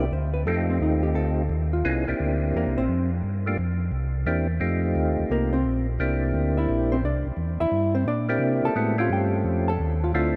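A dark, clean hollow-body jazz guitar takes a fingered solo in this soulful, swinging jazz excerpt at 174 BPM in C mixolydian, playing from 0.0 to 3.1 seconds and returning at 5.3 seconds. A percussive tonewheel organ carries the melody with key click and third-harmonic percussion through a slow rotary speaker and chorus vibrato, while a mellow, round organ holds down the bass line up front over changes that move between F9, C9 and Gm7 before an A7alt. A moderate cathedral reverb places the group in a vast, echoing space.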